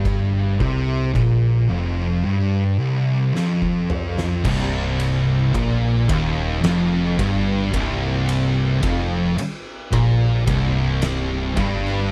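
A slow, straight 4/4 pulse at 55 BPM drives this hypnotic, ominous stoner and doom metal excerpt in C minor. Two dark, distorted fuzz guitars hold the riff in the background from the start, sitting on a C5 power chord, while a picked electric bass holds down the low end with a growly, punchy, overdriven tone. An oversized, low-tuned acoustic drum kit anchors everything in a bright stone room with a pumping quality, its boomy kick, fat snare and dark cymbals sounding saturated and gritty, and it plays a fill from 3.4 to 4.4 seconds. At 4.4 seconds the harmony moves to C minor and a third fuzz guitar enters, brighter and double-tracked, thickening the riff for the rest of the clip. The mix is dry, with little reverb, which keeps the heavy tones close and dense.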